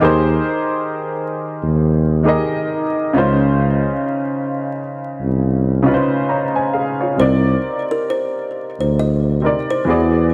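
Vinyl crackle and light studio reverb wrap this echo-heavy lo-fi hip hop excerpt in a reflective, hazy mood, with a gently swung feel. A slightly detuned, woody upright piano carries the accompaniment through cassette tape coloring, moving from Abmaj9/Eb to Dbmaj7, while an up-front, mellow tuba with light vibrato and a smooth top plays the bass line in a jazz style. At 7.2 s, as the harmony settles on Cm9, a soft, fingertip-plucked kalimba enters with a brief melody through tape echo.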